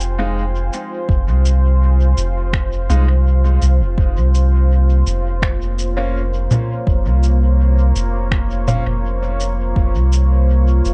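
A straight 4/4 pulse at 83 BPM drives this ambient dub excerpt. It is carried by sampler-style electronic shaker, finger snaps and congas that sound pitched down, muffled and overdriven, with dub echo trailing them, and an electronic kick drum joins at 1.1 s. Underneath, a soft, round sub bass sits up front between F1 and C2, holding the low end as the harmony moves from Fm to Bbm/F at 4.0 s. A moody, mellow pad of detuned sawtooth unison with a sine sub octave, wave-folding and ring modulation sustains chords from Bb3 to Ab5, its slow attack dressed in chorus, built-in reverb and a grainy 12-bit sampler texture. Brilliant, woody upright piano stabs with audible action noise arrive at 0.2 s, each one thrown into dub echo, in a mix that is dry in room sound but echo-heavy and dark at the top, leaving a spacious, deep mood tuned slightly low to A4 = 438 Hz.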